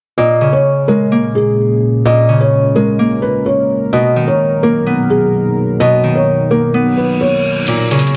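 A half-time trap pulse at 128 BPM in 4/4 frames this eerie, dark hip hop fragment in Bb phrygian, cut from a longer piece. A felt-muted upright piano carries the melody up front, its soft, boxy tone thick with felt and audible action noise, trailed by tape echo. A fingerpicked Celtic harp rings beside it in a low accompanying register, while a deep, moody ambient pad with a slow attack enters at 1.1 seconds to hold sustained chords under chorus and its own reverb. The harmony moves from Bbm7 to Bmaj7, and an electronic reverse cymbal rises at 7.0 seconds into a brief hit from a gritty, overdriven sampler-style kit of crash and hi-hat at 7.7 seconds. A lush hall reverb and a dark, warm mix give the whole an eerie, brooding atmosphere.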